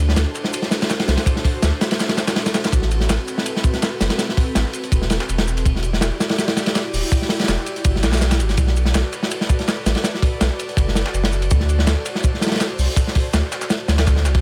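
A dry, close-sounding mix opens this frenetic, raw excerpt of drum and bass with a jungle edge, running at 164 BPM in 4/4 with a light swing on the sixteenths. Up front, a crunchy breakbeat kit drives the track from 0.1 seconds, its tight kick, medium-tuned snare, hi-hat and dark ride cymbal carrying a saturated, gritty character and a rolled-off top. Beneath it, a second, dusty sampler-style kit adds compressed hi-hat, shaker and snare, high-pass filtered and re-recorded in a small room, sitting quietly in the background. A deep, thick sub bass with a fast attack holds the low end between D1 and D2, its triangle tone pushed into saturation. Over this, an airy, breathy pad with slow attack and long release sustains chords through a chorus effect, blending detuned sawtooth, a noise layer and ring modulation into a soft, mellow haze. The harmony moves from D7 through Am69, Em9 and Bm7 before returning to D7 at 11.5 seconds.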